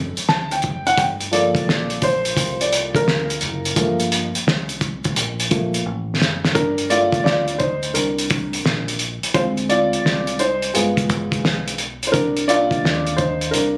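A swung 16th-note groove at 86 BPM in 4/4 sets a mellow, nocturnal jazz-hop mood in G minor, with a cloth-damped drum kit of fat snare, tight kick and hi-hat sounding lo-fi, muffled, gritty and up front, and a drum fill at 5.9 seconds leading into the second section at 6.6 seconds. A dark, woody, slightly detuned upright piano carries a solo through both sections over chords moving from Gm7 to Dm7b5, G7b9 and Cm9, while a deep, round and punchy fingered electric bass sits beneath. This cut from a longer piece has a phone-in-the-room sound with a light club reverb.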